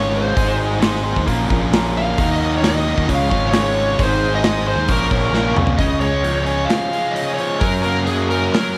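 Classic rock with a driving, gritty mood, cut from a longer piece: a double-tracked, up-front overdriven guitar carries the picked riff while a bluesy lead guitar, distorted and edged with slapback echo, plays the melody on top. A round, fuzzed fingered bass with overdrive holds down the low end, and a big acoustic rock kit with a medium-tuned snare and punchy kick enters at 0.4 s, with hi-hat and toms also in the mix. A drum fill at 5.3 s leads into a half-time passage from 5.8 s, all set in light reverb and small room ambience.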